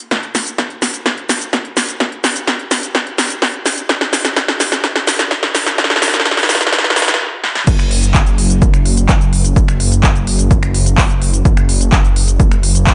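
A thick, detuned sawtooth bass with chorus and sidechain pumping arrives up front at the drop at 7.7 seconds in this anthemic, emotional festival progressive house piece at 127 BPM, following a build-up in which a punchy electronic kick and a layered big-room kit of crisp hi-hats, snare, handclaps, finger snaps, shaker and crash cymbal drive a drum fill before a brief stop at 7.2 seconds, set within a moderate digital room reverb.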